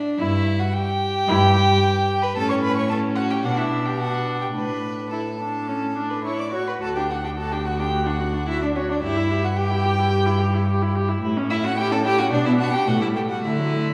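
In a rubato 4/4, this cheerful, graceful excerpt from a quick classical-period string quartet movement sets a dark, nasal first violin melody over a rich, close second violin line, a viola accompaniment with light vibrato and an up-front cello bass, all four bowed with a reedy gut-string tone in period style and heard from further back in a reverberant recital hall.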